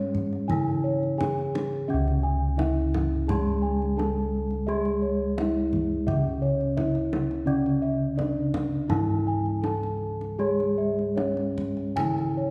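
Heard from further back on a wet, reverberant scoring stage, this hypnotic, shimmering Javanese gamelan passage is cut from a longer piece and moves at 85 BPM in 4/4 with uneven beats, in C# pelog. Two bronze metallophones carry the melody and a lower accompaniment: one is dark and smooth under padded disc mallets, while the other, struck with a horn mallet, rings bright with the shimmering beats of paired tuning. Bossed gongs supply arpeggios and a bass line, one set round and boxy up front, the other mellow under padded beaters, while a deep, vintage-sounding kendang played with soft hands enters at 0.1 seconds.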